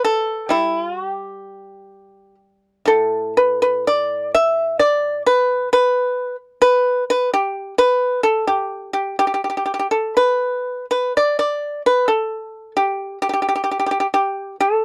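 Unhurried rubato phrasing over a loose 2/4 pulse carries this serene, elegant Chinese traditional excerpt for solo pipa, its bright, percussive fingerpicked tone sitting up front in a dry, close 1970s-style studio sound and ranging from low to high register before the music moves into a new section at 10.4 seconds.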